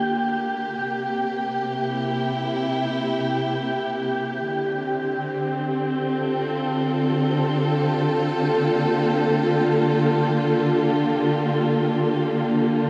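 Melancholic and reflective, this ambient passage in D minor drifts in free time. A lush, bowed symphonic string section plays sustained chords with vibrato and a soft attack, sitting close and up front as it fades in across the 12.9 seconds, moving from Gm7 through C7, Dm7 and Bbmaj7 back to Gm7. Above it, a breathy, wind-like tuned noise texture with its own reverb fades out, and the whole is set in a huge, wet ambient space with a 9.6-second reverb tail, cut from a longer piece.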